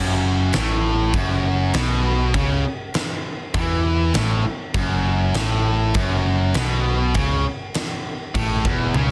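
A straight 4/4 pulse at 100 BPM drives this menacing hard rock cut in F# minor, opening on an F# minor chord. Two picked guitars carry the low riff from the start: a tight, distorted one placed up front and an overdriven one set further back in the background, both bright and electric. Underneath, an overdriven picked bass growls up front with a punchy, amped bite. A huge acoustic arena kit comes in at 0.5 seconds with a fat snare, punchy kick, crashes and toms, capped by a drum fill at 9.0 seconds just as the cut ends. Light reverb and a dense, heavily limited modern master keep the whole sound thick and forceful.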